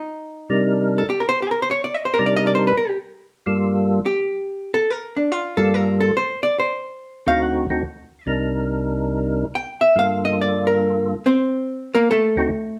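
Swung jazz with a bluesy, soulful mood, cut from a longer piece, with the band playing live together in one room under a moderate studio reverb. A clean, picked hollow-body archtop guitar sits up front and solos from the start to 12.8 seconds over a Cm7, Gm7 and D7b9 progression. Beside it, a fat, percussive tonewheel organ carries the melody from 0.5 seconds, its key click and third-harmonic percussion set against a slow rotary speaker and chorus vibrato.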